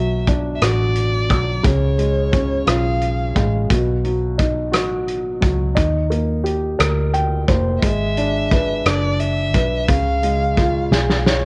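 In a straight 6/8 lilt at 58 BPM, this aching, dramatic pop ballad, cut from a longer piece, rests on a woody, short-sustain upright piano and a dark, round, foam-muted fingered electric bass, with a loose, gritty kit of kick, snare, rim click and hi-hat joining at 0.3 s, saturated and rolled off at the top. A single bowed violin carries the tune, expressive with vibrato, soft attacks and portamento, coloured by cassette tape and tape echo; it sings until 3.5 s, then returns at 7.8 s just after a piano fill. The home cassette sound is dry and close, with the drums and piano up front and the song closing on a piano and drum fill.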